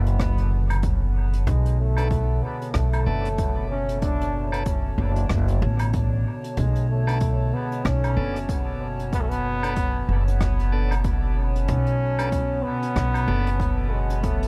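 A loosely swung sixteenth-note feel in 4/4 carries this hazy, meditative ambient dub fragment, cut from a longer piece and resting on a single Bm7 chord. An overdriven electronic kick gives a punchy, produced pulse. Beside it, a vintage brush kit of hi-hat, rim click and woodblock sits dark and smooth with a rolled-off top, its hits trailing into dub echo. Up front, a woody, thumpy pizzicato upright bass holds the low end beneath a warbling, nostalgic lo-fi pad, whose chorus and built-in reverb soften sustained chords with a slow attack and long release. A distant, roomy trombone sings a classical-style solo melody through dub echo, and from 2.0 seconds a bright, shouting tonewheel organ adds lightly overdriven stabs in the background through a stopped rotary speaker, also echoed, while a small room ambience surrounds the mix.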